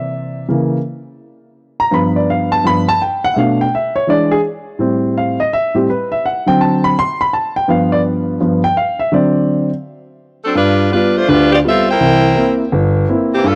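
Jazz with a swinging, energetic feel, this short piece cut from a longer performance opens on a baby grand piano playing alone for its first 10.6 seconds. The piano sounds warm and intimate, up front in the mix, with its action noise audible and a natural tone across a span from deep bass to high treble. It moves through a chord sequence that includes C#m6, G7, Bm9b5, E7, Am7 and D7. At 10.4 seconds a saxophone section enters with the melody, its sound bright, present and full of vibrato, playing as a jazz-style ensemble near the front. The piano continues in accompaniment under the horns as the harmony moves to G7 and C7. The recording has the dry, close character of a 1970s studio, with light reverb and a small-room ambience.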